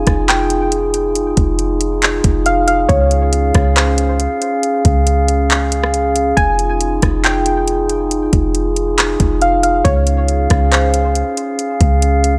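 A soft, round pluck melody, glassy sustained glass harmonica chords and a deep 808-style bass open this melancholic, ethereal cloud-rap excerpt together, with a smooth R&B drum kit joining at 0.1 seconds. The drums settle into an unhurried half-time feel, their soft kick, metallic hi-hats, handclaps and rim clicks carrying a vintage 12-bit sampler grit. Beneath them, the sine-like bass sits dark and up front, each note striking fast and then decaying. The glass harmonica swells in slowly with pure, smooth chords that alternate between Fm7 and Dbmaj7. Above them, the gentle, wave-folded pluck is shaded by chorus and digital delay before it falls away at 11.1 seconds, while the other parts float on in a light, digital reverb to the close of the excerpt.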